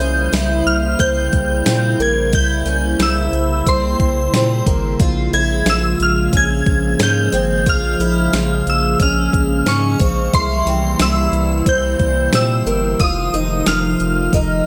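A crisp 8-bit drum machine sets a straight 4/4 pulse at 90 BPM, its thumpy kick, medium-tuned snare, hi-hat and tambourine overdriven and given a roomy, sampled character. This short dream pop passage, cut from a longer piece, feels hazy and melancholic as it moves through C7b9, Bbm7, C7 and F7. A round, deep analog bass with a nasal, dark edge anchors the low end, while a warbling, lo-fi tape-like pad holds detuned, wave-folded chords with a slow attack, chorus and its own reverb. A picked twelve-string acoustic guitar plays woody, boxy arpeggios with an octave-doubled shimmer, thickened by lush chorus and tape echo. Up front, a bright FM bell carries the melody with a dreamy halo of ensemble chorus, tremolo and tape echo, its long release trailing off until the excerpt ends at 14.7 seconds inside a light reverb.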